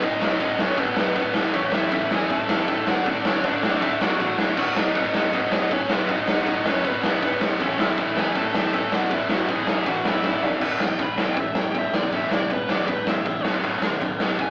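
A straight, driving 4/4 at 159 BPM powers this rowdy, upbeat punk rock excerpt, where a raw garage drum kit sits up front with a punchy kick, medium-tuned snare, crash, ride and toms in a saturated, gritty stone-room sound, backing a biting, overdriven lead guitar melody, a distorted electric guitar riff in the background, a very quiet tight distorted guitar riff and a very quiet growling picked bass, all moving through B, A, D, B, A and E chords in a rough rehearsal-room, AM-radio-style recording with light reverb, until a drum fill at 10.2 seconds launches a lead guitar solo at 10.6 seconds.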